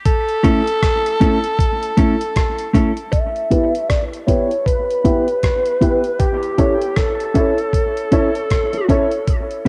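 Dub reggae with a deep, spacious mood and swung sixteenths, opening on a break where a raspy, vibrato-laden tenor saxophone sits up front until 2.7 seconds over a gritty sampler-style drum kit with a thumpy kick, hi-hat and rim click, while a dark, clean, fingered electric guitar plays accompaniment. At 3.1 seconds a filter sweep begins as a distorted, picked lead guitar takes the melody, joined by woody upright piano stabs, with dub echo trailing the saxophone, both guitars and the piano. Moderate spring reverb surrounds this home cassette recording.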